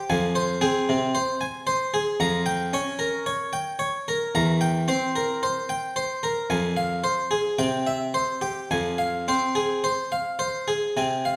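Taken at a slow, rubato pace of about 52-57 BPM in 4/4, this solemn, introspective baroque-style suite movement in F minor is cut from a longer piece and played by a solo harpsichord, up front, with an airy, brilliant Flemish-style tone and octave strings, spanning E2 to Bb5. The harmony moves from Fm through Gm7b5/F and C7/E back to Fm, then C and Fm again at 8.7 seconds, all within about 11.4 seconds, and the instrument sits in a wet recital hall reverb that lets each plucked note ring into the room.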